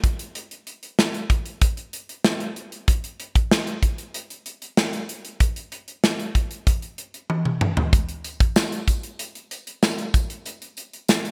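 This is a short pop excerpt at 95 BPM in a straight 4/4, with a romantic, glossy mood and a bright production that recalls 1980s digital sound. A modern acoustic drum kit plays throughout, from 0.0 to 11.3 seconds, covering hi-hat, kick drum, snare drum and toms, and it sits up front in the mix. Its medium-tuned snare and tight kick carry a gated reverb that gives the kit its polished character. A drum fill arrives at 7.3 seconds, and at 7.9 seconds a jingly tambourine joins, very quiet, close and dry, playing until 11.2 seconds. The whole recording carries light reverb with a small room ambience.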